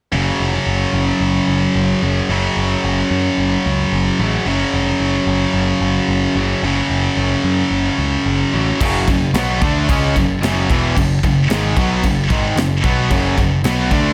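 Studio reverb surrounds this dark, epic heavy metal excerpt, in which two bright, high-gain picked electric guitars (one up front) play distorted riffs over a growling, warm, overdriven picked bass from the start, and at 8.8 seconds a double-tracked, overdriven stack guitar joins in the background alongside a polished, airy small-room acoustic kit with a punchy kick, high-tuned snare and crash cymbal.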